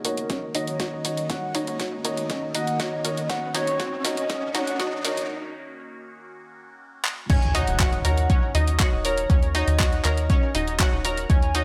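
An up-front, deep electronic kick drives this bittersweet 120 BPM progressive house excerpt in Eb minor, joined by a tight, saturated sequencer bass, a deep house drum kit with a fat snare, handclaps, hi-hat and crash cymbal, a chorused, warbling analog pluck and an intimate, boxy grand piano with audible action noise, both under a filter sweep through the build-up, an evolving, phased wavetable pad that ends at 7.3 s, a velvety, detuned synth lead with vibrato, and a background riser that enters at 1.4 s and an impact that lands with the drop at 7.3 s, all set in light digital ambience.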